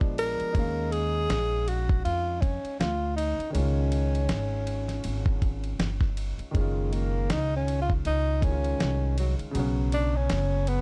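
A swung 80 BPM jazz-hop groove from a gritty, compressed sampler-style drum kit with a thumpy kick and fat snare sits up front beside a woody, dark pizzicato upright bass on gut strings, while a smooth vintage upright piano with long sustain accompanies in F# major and an up-front, breathy tenor saxophone with subtone, light vibrato and scooped notes carries the mellow melody from 0.2 s before taking a solo at 6.5 s, the whole cool, dry hip hop excerpt cut from a longer piece.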